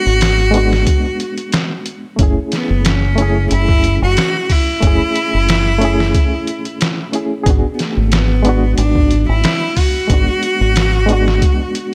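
Trip hop at 91 BPM in 4/4 with a light 16th-note swing, this dark, hypnotic excerpt is cut from a longer piece and moves through G#m7b5, F#m7 and back to G#m7b5. A single bowed cello carries the melody up front, its soft attack, airy sul tasto tone and light vibrato sounding intimate and close, with a touch of tape echo trailing its lines. Beneath it a reedy, worn electric piano plays the accompaniment through its built-in speakers, slightly out of tune, with tremolo and tape echo coloring its chords. A deep dub fingered bass enters at 0.1 seconds, round and punchy, its dark amped tone thickened by tube saturation and sitting low and prominent. The sampler-style drum kit comes in at 0.2 seconds, compressed, pitched down and gritty, with a thumpy kick, a medium-tuned snare and hi-hat placed up front. The dry, close sound leaves each part clear and present.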